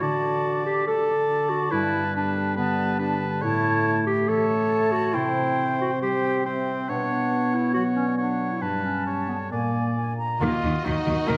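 A short cut from a longer heroic adventure film score opens at a brisk 139 BPM in 4/4, with the ringing, thumb-plucked arpeggios of a concert harp and the mellow sustained chords of a French horn section alongside lines from a clear oboe, a pure, vibrato-rich concert flute and a distant, roomy clarinet. The mood is determined and swashbuckling as the chords move through D, Gadd9, A, C, Bmadd9 and Gadd9 toward A#7. At 10.4 seconds the harmony lands on Ebm, where lush bowed violins carry the melody and a background line over rich violas, focused cellos and woody double basses, while an up-front trumpet adds stabs, all bathed in a wet scoring-stage reverb.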